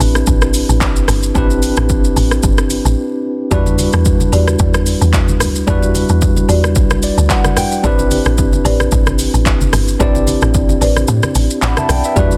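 A dense, heavily limited modern mix with very little reverb frames this deep, hypnotic amapiano excerpt, cut from a longer piece and driven by a swung sixteenth-note feel. A woody, punchy log drum bass anchors the low end, while a clean tine electric piano, heard as if through built-in speakers, sits up front with an overdriven, layered deep house kit of kick, dark hi-hats, handclaps, rim clicks and shaker, ahead of a brief break. From 3.5 seconds a mellow, round marimba played with soft mallets adds background stabs with tape echo over very quiet, low-tuned congas; the electric piano plays a fill at 6.8 seconds, and the kick drops out at 11.1 seconds.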